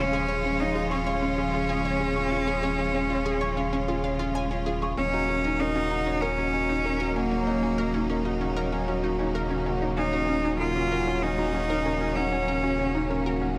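A single bowed cello sits up front, carrying the melody with light vibrato and an intense, bright tone through this short, cinematic and hypnotic piece of piano-and-strings electronica. Beneath it, a studio string section holds lush, sustained ensemble chords with vibrato, while a dark, mellow concert grand piano repeats a riff through tape echo. Tucked in the background, an analog pluck spins arpeggios with a fast attack and short decay, its sawtooth and square-wave layers colored by ring modulation, a filter sweep, chorus and tape echo. A round sine sub bass holds a single deep note under the ensemble, and all five parts play from the opening moment. The harmony shifts from Db/Eb to Ebm7 at 5.0 seconds, and a moderate hall reverb with a 2.1-second decay surrounds the parts.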